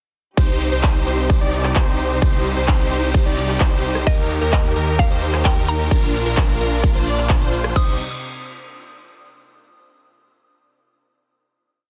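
A complete, emotional and powerful festival progressive house piece bursts straight into its drop at 0.4 s with a punchy up-front four-on-the-floor kick, a crisp overdriven dance kit of claps, hats, rim, cabasa, ride and crash, a thick chorused detuned saw bass, huge bright phased supersaw chords in a dotted rhythm, a catchy plucky lead doubling them in the background and a veiled con sordino string pad, with the bass, chords, lead and strings all pumping against the kick, before a woody, round mallet-like pluck adds hook phrases at 4.1 s ahead of a final chord at 7.8 s in a dense, heavily limited modern master.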